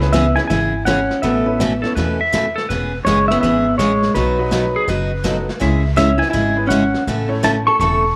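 Country western swing with a cheerful, swinging feel, led by a twangy, up-front pedal steel guitar with volume swells over a dark, clean hollow-body jazz guitar, a bright, full-bodied picked acoustic guitar, a clear, smooth upright piano, a woody, thumpy pizzicato upright bass and a vintage brush kit with a punchy kick set back in the mix, while a shadowy lap steel guitar adds its own sliding swells from 1.8 to 5.9 seconds, all in a short excerpt with spring reverb and small-room ambience.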